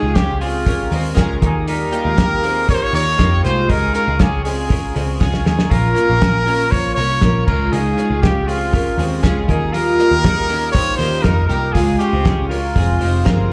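A cloth-damped, thuddy drum kit drives a straight 4/4 pulse at 119 BPM, its fat snare, tight kick and dark cymbals sitting prominently in the mix, with a fill at 5.2 seconds. Beneath it, a vintage foam-muted electric bass plays a round, picked line. This restless, wistful slice of jangly indie pop sets a clear trumpet melody with light vibrato at the front, though it sounds roomy and a touch distant. A bright, twangy twelve-string electric guitar spins arpeggios through lush chorus, plate reverb and slapback echo, while glossy retro synth keys with the same plate and slapback effects add chorused accompaniment in the background, and a hollow, flute-like pad holds very quiet sustained chords. At 5.7 seconds a full-bodied steel-string acoustic guitar joins in the background, finger squeak and all, as the harmony moves between Db, Ebadd9 and Bbm before landing on Fm. The whole performance is heard as a live gig through the venue's PA, wrapped in club reverb.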